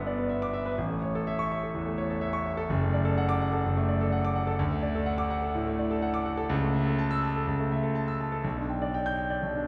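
A clear concert grand piano carries this heroic, sparkling classical study alone, playing with virtuoso flair across a range from F#1 to G6, its deep bass and long sustain sitting up front. The pulse is a rubato 4/4 around 125 BPM in D major, moving through chords such as Em7/G, A, D/F# and A/C# before settling on G/B at 8.4 seconds. A wet scoring-stage reverb places the listener further back in the room, and the 9.7-second passage is cut from a longer piece.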